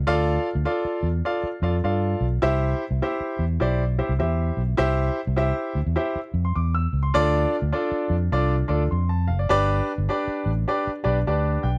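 Danceable and warm, this brief cut from a longer uptempo 1960s-style soul piece moves at 102 BPM in 4/4 with a swung eighth-note feel, centered in C major. A fingered electric bass carries the low end from the start, its round, amped tone sitting up front in the mix. A clear grand piano enters at 0.1 seconds as accompaniment, intimate and natural, with its action noise audible. The harmony moves from D minor to C, back to D minor and then to G, and the piano closes with a fill from 11.0 seconds to the end at 11.8. Light studio reverb and a dark, warm production give the whole a snug sound.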